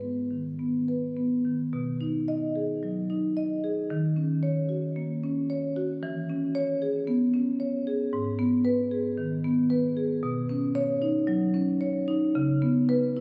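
Contemporary classical music for solo marimba, this reflective, hypnotic fragment of a longer piece unfolds with a free, rubato feel as soft mallets draw a mellow, woody, rounded tone from the up-front rosewood bars across a 13.2-second span, set in a wet church reverb and captured on a phone recording made in the room.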